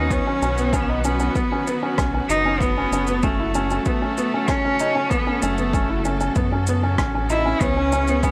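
Piano and strings electronica at 96 BPM, hypnotic and moving, in which a smooth, bowed cello melody with vibrato and digital delay sings over a felt-muted upright piano riff, soft and intimate with audible action noise and its own delay, while a clear studio string section holding sustained chords and a round, dark analog bass both pump against the sidechain, a punchy overdriven electronic kick and a natural shaker and rim click enter at 0.1 seconds, and the chords move from B to F#m and reach C#m7 at 7.6 seconds in a small room with light reverb.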